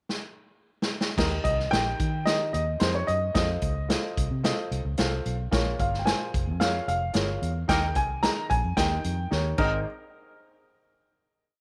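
A driving soul beat, with the snare on all four beats, opens on a drum fill from the big-band kit, whose punchy kick and dark, rolled-off cymbals set a joyful, uplifting 1960s-style soul groove before the band arrives at 1.2 seconds. A round, foam-muted electric bass plays a syncopated line full of slides and chromatic approach notes, while a woody upright piano keeps close-voiced quarter-note chords and a baby grand with audible action noise states short-sustained call phrases as the melody. At 7.7 seconds a smooth horn section with light vibrato joins for ensemble punches at phrase ends, and the band accents drive into a final hit at 9.9 seconds, all in light, small-room reverb.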